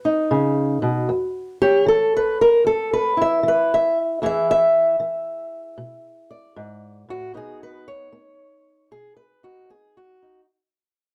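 Acoustic country blues with a rollicking, swaggering mood at 77 BPM in a swung 4/4 and E major, this brief excerpt from a longer piece features a solo fingerpicked old ladder-braced acoustic guitar, woody and boxy with old strings, sitting up front in a dark production with moderate studio reverb as it moves through B, E5 and E7 chords and fades out across its 10.5 seconds.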